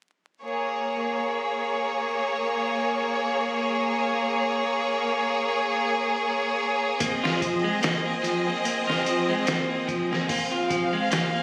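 Caught on a phone in the room, with vinyl crackle and a light digital ambience, this smoky, cinematic trip hop excerpt in Bb minor moves at 73 BPM with a gentle swing. A clear, focused violin section opens alone at 0.4 seconds, holding vibrato-rich bowed chords on Bbm7. At 7.0 seconds the harmony moves to Ab as a slightly broken-up electric guitar enters with picked arpeggios through a digital delay, joined by a gritty, pitched-down sampler kit with a thumpy kick, medium-tuned snare and hi-hat in studio reverb.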